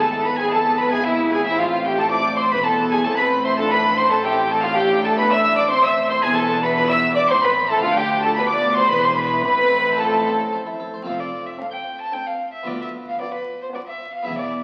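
A straight 3/4 pulse at 113 BPM drives this stormy, dramatic baroque-style concerto movement in A minor, cut from a longer piece, where a close, reedy solo violin and a gut-strung second-violin section sit up front while a background violin section also carries the melody, and a viola section, a distant cello section and a double bass section ground the harmony beneath a brilliant, plucked harpsichord, all steeped in a wet recital-hall reverb and the crackle of a very old 78 rpm record, with the harmony moving to an F chord at 11.1 seconds.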